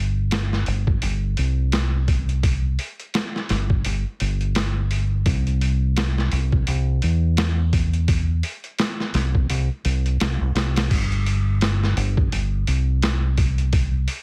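Cinematic and dark, this trip hop excerpt moves at 85 BPM with a swung sixteenth-note feel. A deep dub fingered electric bass opens at 0.0 s, round and punchy with tube saturation, and the sampler-style drum kit enters at 0.3 s, pitched down and muffled, with a thumpy kick, medium-tuned snare, hi-hat and crash, carrying a tape-warm, small-room character. Both parts sit up front in a dry, heavily compressed radio-like sound, and the music shifts into a new section at 10.9 s.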